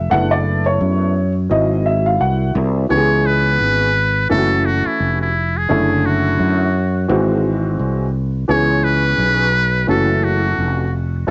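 Jazz-hop with a mellow, nocturnal mood at 86 BPM and a swung 16th-note feel, cut from a longer piece and captured as a home recording on cassette with light reverb. A dark, woody upright piano with audible action noise and a slightly detuned, worn character carries the chords alongside a growly, bright fretless electric bass coated in lush chorus. At 2.9 s a buzzy, metal-muted trumpet enters up front with a jazz-style vibrato melody, tinted by cassette tape and analog delay, over a progression that moves through Bm11/F#, G#7b13, C#m7 and F#m7.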